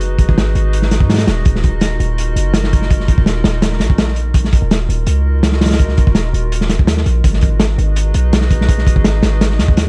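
Nostalgic and atmospheric, this short drum and bass cut from a longer jungle piece sits in a dark, warm production dusted with vinyl crackle and little reverb. A crunchy breakbeat kit of kick, snare and hi-hat runs throughout, its acoustic small-room sound saturated and gritty, with a tight kick, a medium-tuned snare and a rolled-off top that keep it smooth despite the grain. Beneath it, an 808-style bass plays from the start, deep and boomy, its sine tone carrying a noise layer, a fast attack and a decaying tail. Both parts sit up front in the mix, giving the groove a close, weighty presence. A drop lands at the opening and another at 1.5 seconds, after which the same material carries through to the end at 9.9 seconds.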